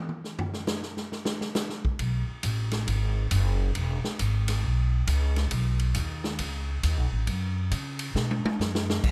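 A woody, growly pizzicato upright bass on steel strings sits up front in this joyful, energetic big band swing excerpt in B major at 136 BPM, entering at 2.0 s and spanning a low range. The swinging drum kit opens alone with a short solo of kick, snare, hi-hat, toms, ride and crash, its punchy kick and medium-tuned snare carrying a natural big-room character. It plays through to the end and adds a fill at 8.2 s, all in a dry, close sound.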